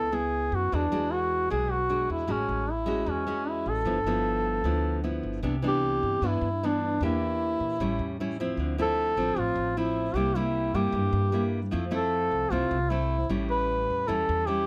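A duduk, nylon-string guitar and upright bass begin together in this sunny, romantic bossa nova excerpt at 153 BPM in 4/4 with a straight feel. The duduk carries the melody up front in a folk style, its tone full of vibrato and scooped notes, moving between C#4 and B4. Beside it, the bright, fresh-stringed guitar is fingerpicked in a classical manner, with audible finger squeak, as it plays rich chords such as F#m11, E9 and G13 before settling into C major at 5.4 seconds. Underneath, the pizzicato upright bass gives a woody, thumpy pulse from its gut strings. A light reverb adds gentle space as the second section moves through Cmaj9, Dm9 and Fmaj7, ending on A7 when the piece is cut at 14.7 seconds.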